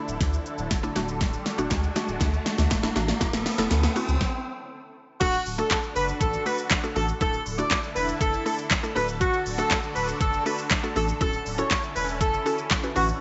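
Carefree and upbeat, this 120 BPM dance-pop excerpt in D major opens with a build-up where a woody, mallet-like synth pluck and a lush, detuned unison pad pump under sidechain over a saturated sub bass and a knocking, up-front pop drum kit, joined at 1.7 s by a very quiet, hollow group handclap, as an electronic riser climbs from 0.4 s into a stop at 4.2 s before the drop at 5.2 s brings in a tight, vibrato-tinged horn section carrying the melody with slapback echo, all set in a moderate echo-chamber reverb.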